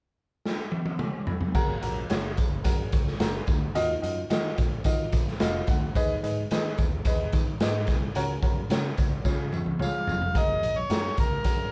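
Recorded with light reverb by a band playing live in one room, this uplifting 1960s-style soul excerpt opens with a drum fill from a raw garage kit, its punchy kick and medium-tuned snare placed up front with a rolled-off top. From 1.5 s a clear, woody upright piano with long sustain and a fingered electric bass join, along with a jingly tambourine in the background, and the piano adds a short fill of its own midway. At 9.8 s a gritty, overdriven harmonica takes the melody as a solo, close and amplified, with light vibrato and tongue slaps carrying it through the closing seconds.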